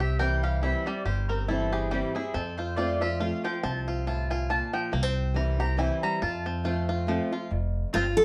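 A dark, lightly reverberant recording captures a lively, virtuosic bluegrass excerpt in a swung 3/4 at 139 BPM in F major, where a woody, double-strung mandolin takes a solo of stabs from 0.0 to 7.5 seconds over twangy fingerpicked banjo arpeggios, boxy archtop guitar accompaniment with audible finger squeak, and a steel-strung pizzicato upright bass sitting up front, before a bright, full-bodied dreadnought guitar steps forward with the melody at 7.9 seconds.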